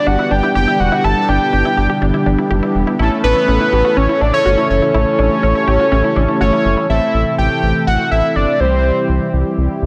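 Wistful and nostalgic, this synth-pop excerpt moves at 123 BPM in a straight 4/4, with a fat, detuned analog lead carrying the melody up front over a deep, round analog bass. Bold, brassy synth brass with chorus and vibrato fills out the accompaniment. A vintage string machine on cellos holds dark, sustained chords through phaser and ensemble chorus, and a punchy unison pluck plays arpeggios through tape echo in the background until 6.9 seconds, all set in a lush hall reverb as the harmony moves from G6 and A to Am and C.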